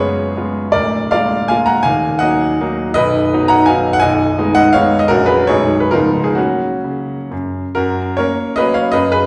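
A clear, intimate grand piano sits up front with its action noise audible, playing a rustic, proud romantic dance in triple time with dotted rhythms in F# major, its rubato tempo moving between 125 and 178 BPM through a brief fragment of a longer piece heard in a wet recital hall, the harmony settling on F# at 6.4 seconds before a new section begins at 7.8 seconds.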